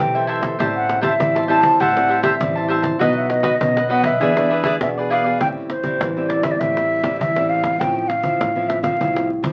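A straight, even samba-and-choro pulse in four drives this short cut from a longer piece, set by a close, dry cajon with faint snares. Its kick and snare drop out at 5.1 s. The mood is yearning and nostalgic. An airy wooden flute with vibrato and a crisp attack carries the melody up front, over a small, fingerpicked nylon-string guitar. A warm, crisp, picked cavaquinho adds to the accompaniment until 5.4 s, when the harmony moves from E minor toward A minor. A woody pizzicato upright bass with steel strings sits in the background. The whole band plays in a wet small room and comes through the crackle of a very old 78 rpm record.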